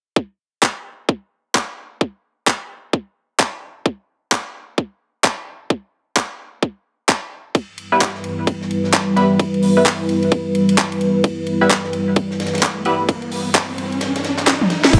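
A swung 130 BPM bass house groove in E minor opens with a tight, overdriven electronic kick and an up-front garage kit whose cracking snare, handclaps, shaker, toms and crash carry the same grit, setting a swaggering, aggressive tone. From about 7.5 s a bright-cymballed acoustic rock kit sits low beneath them with pumping hats and cymbals. A nasal, band-passed sawtooth stab with phaser and dub echo then appears, followed by a deep, moody analog pad with chorus and pumping. A riser builds from 12.7 s, the kick drops out at 14.0 s, and a drum fill leads to a final instant where a growling FM bass on E1 and a rich, bowed string section in the background arrive, all in a plate-reverb studio ambience.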